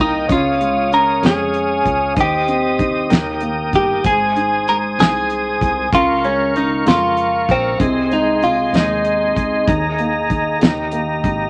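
A clean, compressed electric guitar with a phaser carries the tender melody of this swaying six-eight pop ballad, set over a soft felt-muted upright piano with audible action noise, smooth tonewheel organ chords with chorus vibrato, a growly, round fretless bass, and a damped 70s drum kit with a fat snare and tight kick that enters at 0.3 seconds, all in a small, wet room, before the guitar drops out at 10.9 seconds in this excerpt from a longer piece.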